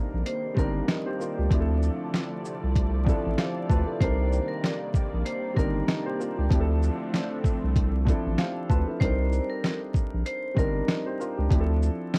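This gritty, tough boom-bap hip-hop excerpt runs at 96 BPM in 4/4 with a swung 16th feel, set in C dorian and moving between Cm9 and Dm9 chords. A compressed, pitched-down sampler-style drum kit with a thumpy kick, medium-tuned snare, hi-hat and shaker sits up front alongside a deep, saturated sine sub bass. A dark concert grand piano, intimate with audible action noise, carries the accompaniment through cassette tape coloring and filtering. Beneath it, a lush, detuned sawtooth pad with chorus and phaser holds sustained chords until 9.0 s. A vibraphone struck with hard mallets plays a metallic, ringing melody with slow motor vibrato and tape echo. The home cassette recording adds light reverb, vinyl crackle and a faint mains hum.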